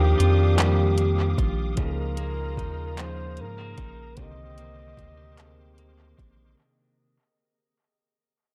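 Slow six-eight R&B at 50 BPM, tender and sensual, drifting through Ebmaj9, Db69 and Cm9 as the fragment fades out across its length. A deep, round analog bass sits up front under a soft, tape-warm electronic kit of kick, hi-hat and handclaps. A worn, slightly out-of-tune tine electric piano with overdrive and tape echo and tight jazz-style horn stabs sit in the background, joined by a reedy tonewheel organ with key click through a fast rotary speaker and a dark picked clean electric guitar. From 1.8 seconds a breathy, whispered flugelhorn carries an intimate melody with vibrato, all set in light reverb within an echo-heavy mix.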